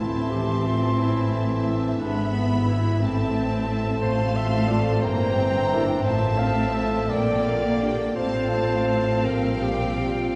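Classical and tender, this serene 6/8 passage cut from a longer piece moves at a rubato 58 BPM toward F major from 4.0 s, with a clear violin section singing the melody while an airy silver flute, a lush violin section and a smooth clarinet weave second lines, a viola section, a very quiet bassoon, a background French horn section holding sustained chords and a mellow ringing harp in arpeggios supporting them, and focused cellos and expressive double basses with portamento anchoring the bass, all heard from further back in a wet concert hall.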